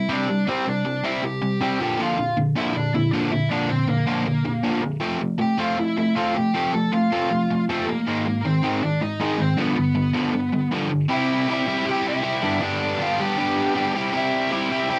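A straight, driving 4/4 pulse carries this rowdy, rebellious punk fragment, lifted from a longer piece. A crunchy, bright overdriven electric guitar, picked and double-tracked, hammers out the riff up front for the full 15.0 seconds. Above it, a dark, smooth electric lead guitar, also picked and overdriven, sings the melody, sitting a little lower in level than the riff. Both guitars carry the hiss and grit of cassette tape, and a short booth ambience gives the home recording a close, boxy feel. The harmony wanders through C, Bb, F, Ab and G7 before settling into a new section at 11.1 seconds that moves between C and G.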